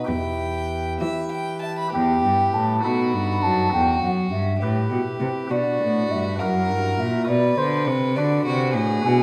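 From the first moment, a hollow, wooden baroque flute with pure tone and vibrato carries a flowing, solemn melody in 6/8 from a slight distance, alongside a close, reedy gut-string violin on a second line, the soft chiffing flute stops of a chamber organ, and a rich, up-front cello bass, the whole fragment of this baroque-style sonata movement with continuo ringing in a wet recital hall.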